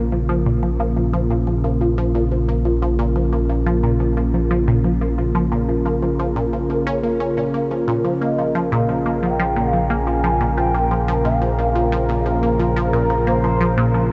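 Ambient, sequencer-driven space music with a hypnotic, mysterious mood, built on a warbling, vintage analog drone bass under a bright, evolving pad of sustained chords and a squelchy, ring-modulated blip pluck riff dressed in phaser and tape echo, joined from 8.2 seconds by a smooth, dark synth lead with vibrato, lush chorus and tape echo singing the melody, all set in a huge ambient reverb.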